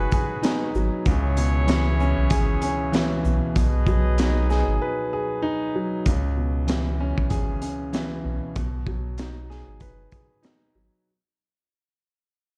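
A crunchy, saturated breakbeat kit sits up front in this gritty, reflective boom-bap hip-hop cut from a longer piece, with a tight kick, high-tuned snare, hi-hat and shaker under a rolled-off top. It moves at 96 BPM in 4/4 with a swung sixteenth feel, in C# minor. A vintage grand piano carries the accompaniment with long sustain, over a round, sine-like sub bass that is deep and mellow. A punchy trumpet section adds tight pop-style stabs with slapback echo until 4.8 seconds, leading into a short break before the music fades out from 6.1 seconds. The harmony alternates between B6 and C#m7, and the small room and dark production give the whole piece a close, dusky sound.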